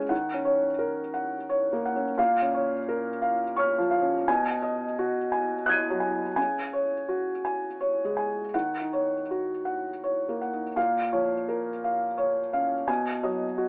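A felt-muted upright piano plays alone and up front, boxy and soft with audible action noise, through a melancholic, intimate neoclassical minimalist passage at 85 BPM in a rubato 3/4, tuned to A4 = 442 Hz, spanning A#2 to D#7 over chords moving from D#m7 through A#m, G#m7/B and C#sus4 before returning, all heard through telephone-like sound and light reverb in a live single-room recording that breaks off at 13.7 seconds as a short excerpt of a longer piece.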